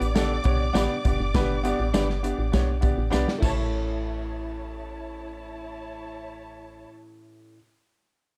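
A punchy acoustic drum kit with crash, hi-hat, kick and snare drives this uplifting 1960s-style soul fragment, closing with a fill at 3.1 seconds and dropping out at 3.6 seconds as the harmony moves from G to A. Beneath it, a clear baby grand piano sits up front with short-sustained accompaniment, a round, woody FM bass holds the low end, and a jingly tambourine hovers in the background. A twangy, compressed electric guitar adds bright picked stabs from 0.7 seconds, while a distant, lush violin section carries a bowed second line with vibrato and portamento, set in a dark production with small room ambience and light reverb.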